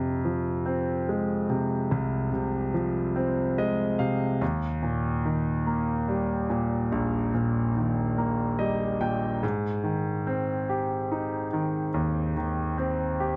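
A solo concert grand piano carries this melancholic, aching pop fragment in a straight 6/8, its clear, intimate tone reaching from deep bass up into a present upper register, with long sustain and audible action noise. Brief fills surface around 3.2 and 8.2 seconds as the harmony moves from F minor through Eb to Abmaj7. The sound is dry and close, in the manner of a 1970s studio, with the piano up front in a small room ambience.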